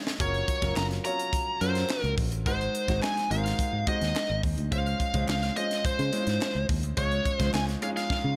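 Polished 1980s jazz-funk pop in Db major at 106 BPM, glossy and breezy, this short cut from a longer piece moves through Gbmaj7, Ab7 and Dbmaj7 over a straight 4/4 groove. A tight funk drum kit with a high-tuned snare and tight kick sits up front beside a round fingered electric bass, while a clear, smooth grand piano with subtle chorus and short sustain fills in the harmony. A biting, overdriven lead guitar carries the bright melody, very quiet hollow group handclaps join at 0.8 seconds, drum fills mark the start and 8.1 seconds, and light small-room reverb frames the mix.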